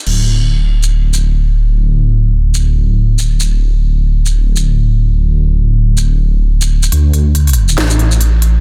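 Meditative and cavernous, this short cut from a longer deep dubstep piece moves at 140 BPM in 4/4 with a half-time feel and a 58% swing on the sixteenths, tuned slightly sharp to A4 = 441 Hz. A dark detuned saw bass dominates from 0.1 s, sitting up front and rumbling between D1 and D2, its unison sawtooth layers beating against a sine core with a fast attack and long sustain. Beneath it, an electronic garage drum kit sits lower in the balance, its layered, produced sound built from crisp hats, a shaker, a crash and a cracking snare, tape-warm and re-recorded in a large room. The opening section runs until 6.9 s, when a build-up takes over and carries through to the end. The mix is dry overall, with a dense, heavily limited modern master.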